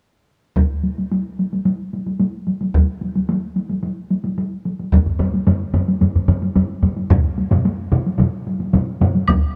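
Powerful and ceremonial, this short excerpt of traditional Japanese taiko drumming moves at a straight 110 BPM in 4/4, with two taiko groups struck with heavy and hard sticks playing up front from 0.6 seconds, a third heavy-stick group in a small room joining at 4.9 seconds and a fourth hard-stick group at 7.1 seconds, one layer carrying a vintage, band-limited tone and another the air of a live room, before a close, dry woodblock gives a woody click at 9.3 seconds, all under light reverb.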